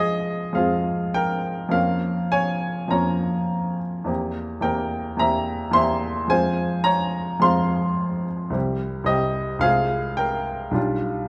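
A romantic classical character piece for solo baby grand piano, this brooding, bittersweet fragment of a longer work moves at about 107 BPM in 4/4 with elastic rubato, with the up-front, intimate piano sounding dark and mellow, its short sustain and audible action noise set in a reverberant recital hall as it spans B1 to C6 and travels from F minor through Bbm/F, C7/E and Cm before arriving on G7/B near 10.8 seconds.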